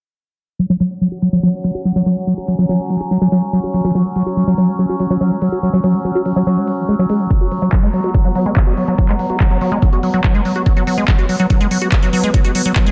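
Intense and psychedelic, this psychedelic trance passage at 143 BPM, cut from a longer piece, opens at 0.6 seconds on a squelchy, resonant square-wave acid bass riff with chorus, digital delay and sidechain pumping. The bass sits up front under a filter sweep over an F#5 chord, and a techno kit of handclaps and smooth hats joins at 0.8 seconds, followed at 1.0 second by a slow-attack sawtooth-and-sine drone of moving overtones with chorus and its own reverb. An overdriven, knocking electronic kick drum, re-recorded in a small room, arrives at 7.3 seconds, all set in a lush hall reverb within a dense, heavily limited master.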